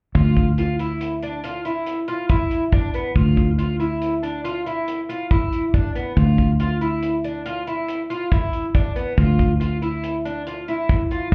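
In a straight 7/4 at 140 BPM, this brooding, tense slice of progressive instrumental band music sits on D dorian, holding a single Dmadd9 chord throughout its roughly 11 seconds. A fingerpicked twelve-string acoustic guitar plays arpeggios between B3 and F4, its bright, shimmering, octave-doubled parlour tone sitting up front with audible finger squeak. A fingered electric bass holds D2, round and foam-muted, direct and amped, and placed close in the mix. A soul drum kit enters at 0.2 seconds on hi-hat, kick and snare, with a tight kick, a medium-tuned snare and a rolled-off top from a small room. The whole band comes through light club reverb and EQ, heard muffled as if through a wall, and the recording is cut from a longer piece.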